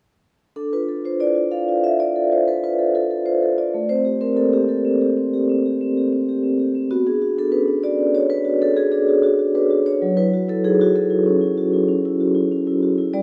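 A solo vibraphone played with soft mallets sounds at 0.6 seconds, its metallic, ringing tone shimmering with a slow motor vibrato. This is a contemporary classical piece in 5/4 at 95 BPM with a straight feel, and its mood is hypnotic and reflective. The vibraphone sits up front, mellow and airy, ranging from F#3 to F5 as it moves through Dm, Am7, Bm and F#m7. A moderate concert hall reverb lets each note bloom, and the production is dark and warm. The passage, cut from a longer piece, runs until 13.2 seconds.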